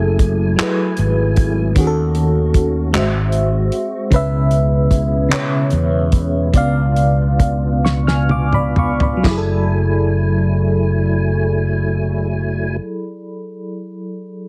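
Sultry and late-night, this brief cut from a longer piece is slow R&B in a straight 6/8, moving at 41-51 BPM in F# minor. An FM electric piano with tremolo carries the accompaniment up front, its tone full-bodied and dark with a fast attack, a decaying tail and a noise layer, and it rings on until 14.5 seconds. Beneath it, a tonewheel organ holds sustained chords with chorus vibrato, key click and a slow rotary speaker, sounding clear and clean, while a fretless electric bass growls bright and amped near the front. A cloth-damped, thuddy drum kit with a fat snare, tight kick, dark cymbals, handclaps, toms and a splash comes in at 0.2 seconds and, as the tempo slows, plays a drum fill before dropping out at 9.5 seconds. The harmony moves from F#m9 through D#m7b5, G#7b13 and C#m7 to C#7b9 before returning to F#m9, and the whole mix has little reverb and a heavily compressed, radio-like sound.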